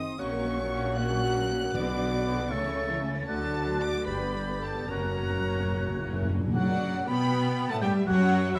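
A dramatic, restless classical orchestral passage in 6/8 with rubato, cut from a longer piece, where a rich, expressive chamber violin section carries the melody over airy flutes, a warm oboe, a mellow clarinet, lush background symphonic violins, focused violas, and smooth, even cellos and double basses, all bound together by tight French horn chords. Hard-mallet timpani on calf heads break in briefly at 1.7 seconds and return with a fill from 4.9 seconds, and a present, mellow trumpet adds stabs from 6.5 seconds as the music moves into a new section. The sound is dark and roomy, set in a wet recital hall that blends the distant winds and strings into a plush whole.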